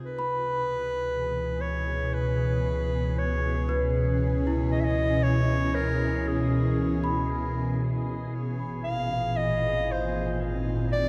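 A vast, echoing cathedral reverb with a long tail surrounds this reflective, spacious ambient excerpt, cut from a longer piece and moving at a slow 58 BPM in 4/4 with a straight feel. An ethereal, airy pad holds sustained chords with a slow attack and long release, its detuned unison layers thickened by ensemble chorus, while a round analog bass sits deep beneath it. Up front, a clear clarinet sings a classical-style solo melody from 0.1 seconds, its notes trailed by delay. A delicate, bell-like celesta ripples through arpeggios in the background, sweet and ringing through its own delay. From 1.1 seconds a calm, warbling, organ-like drone with a vintage character joins, and the harmony rests on C#m7 before turning to G#add9 at 8.3 seconds.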